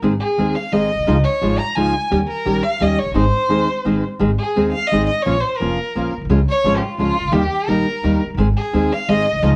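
A single bowed violin carries this passionate, sultry tango fragment in Ab major, its vibrato and portamento giving the line an expressive, singing quality. Underneath, a dark, fingerpicked classical nylon-string guitar with audible finger squeak provides accompaniment, and a pizzicato upright bass on gut strings adds a woody, thumpy pulse at 172 BPM in a rubato 3/4. The whole passage sits in a moderate studio reverb and carries the worn, warbling pitch drift of old cassette tape, moving through chords such as Dbadd9, Eb7 and Bbm before settling back on Ab.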